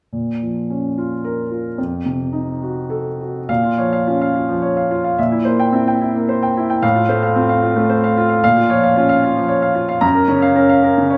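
A bright, brilliant grand piano sits up front with long sustain in this bittersweet, stormy romantic character piece in 3/4, played with flowing rubato across a span from F2 to Bb5 and opening in a recital hall's moderate reverb, moving through Bbm and F7b9 before a second section from 3.5 seconds that passes through C7/Bb, F/A and back to Bbm before settling on Gbmaj7 as the fragment breaks off at 11.2 seconds.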